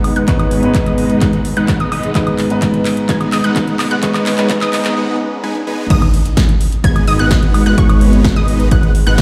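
A straight 4/4 pulse drives this emotional, powerful stretch of festival progressive house, with an overdriven electronic kick entering at 0.3 s and sitting up front, backed by a layered dance kit of punchy snare, metallic hi-hats, handclaps, crash cymbal and woodblock that runs a drum fill through most of the build-up. A warm, vintage grand piano carries the accompaniment during that build-up, pumping with the sidechain and trailing dub echoes. A huge, thick supersaw riff moves through a filter sweep, while a full-bodied unison pluck spins high arpeggios with a cassette-tape tint, both pumping and echoing. A very quiet riser and impact creep in from 3.7 s, a short break follows, and at 5.9 s the drop lands as the piano stops and a saturated, chorused detuned saw bass settles into the background. A lush hall reverb and the sense of a big sound system filling a bare room give the sound its scale.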